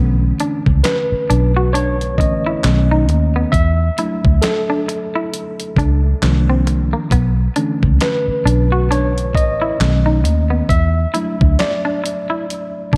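A worn, slightly out-of-tune tine electric piano takes the solo through this late-night, introspective neo-soul excerpt, lightly overdriven and heard through its built-in speakers as it moves over Bm11, B9, E9sus4 and Cm11 chords. Beneath it, at a slow 67 BPM with a swung sixteenth feel, a dark, foam-muted fingered bass sits round and punchy, and a twangy, slightly broken-up electric guitar adds a quieter second line. A gritty, compressed sampler-style kit enters at 0.4 seconds with a thumpy kick, fat snare, hi-hat and handclaps, all under a light reverb.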